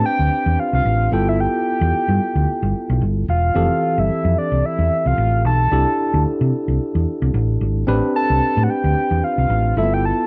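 Slick and danceable, this short excerpt of early-eighties boogie funk moves at 111 BPM in A minor with a 16th-note swing, cycling through Am11, G13, Fmaj9 and C69 chords. A soft, octave-layered synth lead carries the melody up front, its round, sub-octave tone shimmering with chorus, vibrato and a slapback echo, while a clean tine electric piano played through its built-in speakers supplies the accompaniment. Entering at 0.2 seconds, a dark, amped hollow-body short-scale bass sits loudest in the mix, all within a dry, close studio sound touched by digital ambience.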